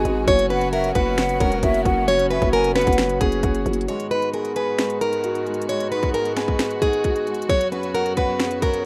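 A half-time trap beat of hard-clipped kick, sharp snare, crisp hi-hats and finger snaps drives this hard-hitting, melancholic hip hop fragment, where a picked, up-front old ladder-braced acoustic guitar carries the delayed melody with audible finger squeaks over a boxy, dark grand piano and gently bowed, woody strings, while an airy flute with delay adds a second line until 3.0 seconds and a growling, buzzy 808 bass sits beneath until 3.9 seconds, in a dry, rough home-demo mix.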